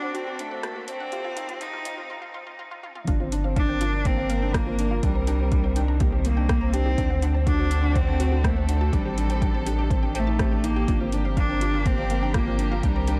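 Piano and strings electronica with an intimate, hypnotic mood, cut from a longer piece, where a rich, bowed solo cello carries the melody over sul tasto chamber strings, a felt-muted upright piano riff with audible action noise, a round analog bass and a detuned sawtooth pluck's background arpeggios with tape echo, the bass and pluck pumping to the sidechain, while overdriven deep house drums with metallic hats build through a short break and a fill at 2.8 seconds before a punchy electronic kick lands the drop at 3.1 seconds, all in a dark production.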